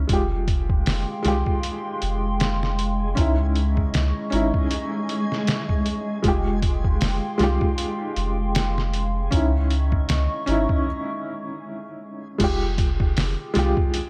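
Melancholic, brooding trip hop excerpt in which a muffled, pitched-down sampler-style drum kit with a thumpy kick and studio reverb sits up front beside a round dub sub bass, while a felt-muted upright piano with audible action noise, tremolo and tape echo plays soft accompaniment over a warbling, detuned lo-fi pad, a faint reversed granular texture drifts in the background from 1.0 to 10.9 seconds, and the chords alternate between Fmadd9 and Dbmadd9.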